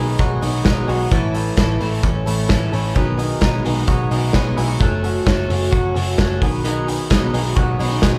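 Nostalgic and breezy, this short fragment of jangly indie pop sounds like a band playing live together in one room, with a moderate large-studio reverb around it. A picked twelve-string acoustic guitar carries the accompaniment, its octave-doubled strings shimmering with a warm, boxy body, an audible finger squeak and swing. An electric guitar through a small old amp weaves arpeggios alongside it, its tone compressed and slightly broken-up with a warm glow. Underneath, a vintage foam-muted electric bass stays low with a dark, round, amped thump. A loose acoustic drum kit comes in at 0.2 seconds and sits up front, with a punchy kick, a medium-tuned snare, hi-hat and a pumping room sound. The chords move from B6 to A, back to B6, then through F#m before landing on B6 again.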